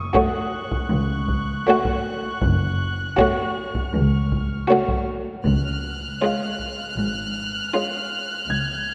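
Eerie and ominous, this short cut from a longer suspense film score moves at 79 BPM in a straight 4/4, its harmony settling on F#m before turning to C# at 5.5 seconds. Chamber strings carry the piece, bowed sul tasto with soft attacks: an up-front violin section holds a melody on C#5, another violin line with a smooth top sits lower as a second voice, and a third violin section hovers high in the background as texture. Violas with vibrato fill the middle as accompaniment, while dark cellos in the background and double basses enter at 0.9 seconds to anchor the bass. High above, a clear concert grand piano adds an open texture in its upper register. Solo taiko drums struck with hard sticks, heard in a live room, sound until 6.9 seconds. The ensemble sits close and intimate, yet a wet concert hall reverb lends the whole a lingering tail.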